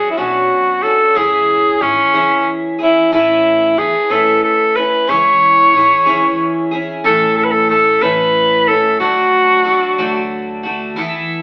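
A vintage-toned tenor saxophone sings a yearning, classical-style melody with vibrato up front over a shimmering, octave-doubled, picked twelve-string acoustic guitar from the start, joined at 0.2 seconds by a woody pizzicato upright bass in the background, in this bittersweet indie folk fragment with a building arrangement at a slow 61 BPM in 6/8, moving from Bmadd9 and C#m through Aadd9 to A and D, with the band heard playing live in one room through an AM-radio sound steeped in large studio reverb.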